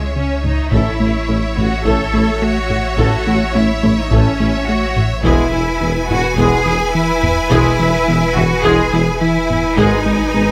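Closely miked with light reverb, this tense, brooding fragment of a hybrid orchestral and electronic film score moves at 106 BPM in a straight 4/4, with the harmony passing from C#m through A and E to G#m. A punchy, ring-modulated analog bass riff and up-front, focused cellos drive it alongside a deep sine sub bass, while bright, intense violins carry the melody over a second violin line with a smooth top. Heavy-stick taiko drums in a small room enter in the background at about 0.4 s. From about 0.7 s, rich violas, distant double basses, a mellow tuba and brilliant trombones fill in the background, joined by very quiet, dark French horns.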